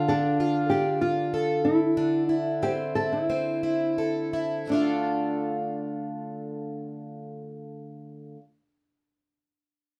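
A reflective, wistful acoustic pop excerpt in D minor, moving at a straight 4/4 pulse of roughly 83-98 BPM and slowing down over its first 4.7 seconds. A thumb-plucked, classical-sounding nylon-string guitar carries the melody, while a picked, plugged-in twelve-string acoustic guitar accompanies with a boxy, parlour character, shimmering octave-doubled strings, up-front presence and audible finger squeak. The harmony moves from Dm to Am/D and back to Dm at 4.7 seconds, set in a wet studio ambience.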